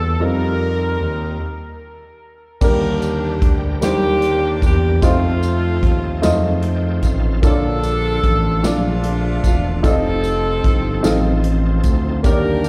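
Slow gospel in 6/8 at 50 BPM, hopeful and soulful, this clip is cut from a longer piece and sounds like a live gig heard through the venue's PA in a small room with recital hall reverb. A tight, close-miked saxophone section carries the melody up front with light vibrato and slapback echo, joined briefly by a bright solo trumpet with slapback and tape echo that drops out at 1.8 seconds. Underneath, a woody, intimate upright piano with audible action noise and a slightly detuned, short-sustained tone supplies the accompaniment. A very quiet, lightly overdriven tonewheel organ holds full, shouting chords through a slow rotary speaker and steps forward with a fill at 6.2 seconds. A smooth sawtooth-and-triangle synth bass with wave-folding, vibrato and portamento sits up front. After a stop from 1.4 seconds, a punchy acoustic drum kit with bright cymbals and a jingly tambourine in the background enter at 2.6 seconds as the chords move from Ebmaj7 through F7 and Bbmaj7.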